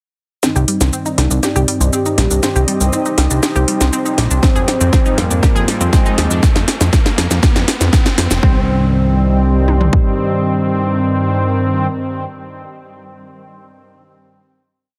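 A straight four-on-the-floor pulse drives this hypnotic, cinematic melodic techno piece, with programmed metallic hats, a shaker and a cracking snare on the backbeat from the start, joined at 4.4 s by a punchy kick and toms. A fat, detuned analog bass gallops in sixteenth notes with tube saturation and sidechain pumping, while a round, warbling analog pluck runs a 16-step arpeggio sequence through chorus and digital delay. Bold, nasal analog synth brass holds open-voiced chords with syncopated pushes, and a smooth, expressive synth lead with vibrato carries a repeating riff melody in the background, colored by chorus and delay. Underneath, a deep, moody pad with slow attack, vintage 12-bit sampler grit and built-in reverb sustains Cm and Fm chords, and a very quiet riser marks the transition. The first 8.4 s form a build with filter sweeps on the pluck, lead and polysynth and a running drum fill, followed by a final Cm chord ringing from 8.4 s, all in a dry, heavily compressed, radio-style mix.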